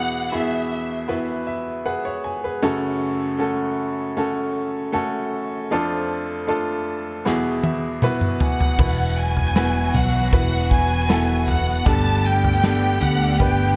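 A bright, woody upright piano accompanies this heartfelt, emotional pop ballad at 78 BPM, up front with audible action noise and long sustain, while a lush, vibrato-rich violin section carries the melody through a touch of delay, briefly at the start and again from 8.4 seconds. An airy, polished drum kit with a punchy kick enters at 7.3 seconds, and at 8.8 seconds a growly fingered electric bass and a clear string section holding sustained chords in the background join in. The piece moves through Eadd9, F#m and Dm/F before settling on Esus2 and Gadd9, all in a light studio reverb, in a passage cut from a longer piece.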